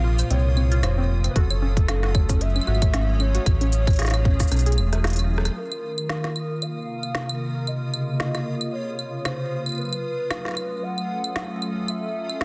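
IDM with an intricate, glitchy mood, moving at a swung pulse in this short passage cut from a longer piece. A warbling, nostalgic lead carries the melody throughout, its tone full-bodied and mellow under lush chorus and tape echo, while a hollow, flute-like pad holds sustained chords beneath it through ensemble chorus. A dusty, lo-fi pluck spins arpeggios through cassette-tape grit and delay until about 5.4 seconds, alongside a round, deep analog bass that sits up front and drops out at 5.5 seconds. A faint bubbling texture with random resonant filter steps and sidechain pumping churns quietly in the background, and an organic electronic kit of woody snare, crisp hats, claves, rim clicks and shaker, re-recorded in a small room, enters at 0.2 seconds. A tight, tape-toned kick punches in for a stretch before a drum fill leads into the second section, where the chords shift through suspended and minor colours over a dense, heavily limited, dry mix.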